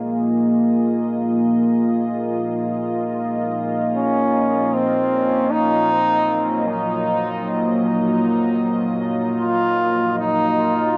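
An echo-heavy mix bathed in moderate spring reverb and studio ambience opens this deep, spacious ambient fragment in free time, cut from a longer piece. A dark, warbling pad with a vintage sawtooth character and a sub octave, thickened by chorus and its own reverb, holds sustained chords from the start, moving from Bb7(no3) to Ebmadd9. At 4.0 seconds a bright, roomy solo trombone enters with a classical-style melody in a narrow middle range, its line trailing dub echo.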